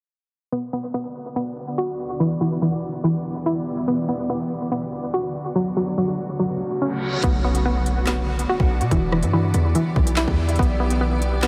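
A hollow, nasal square-wave pluck opens this tense, menacing drill excerpt at 0.5 s, playing bouncy arpeggios up front through chorus, a low-pass filter and a diffuse ambient delay, while a filter sweep runs until 7.2 s. A granular cloud pad joins at 1.2 s with blurred, evolving sustained chords over a Bm, Em7, Bm, F#m progression. A reverse cymbal leads into an electronic impact at 7.2 s, where the half-time groove arrives. A punchy, heavy 808-style bass sits up front beside a produced drill kit of hard-clipped kick, woody snare, crisp hi-hats, handclaps and rim clicks. The dreamy mix is soaked in a huge ambient reverb and softened by a low-pass filter, and the passage is cut from a longer piece.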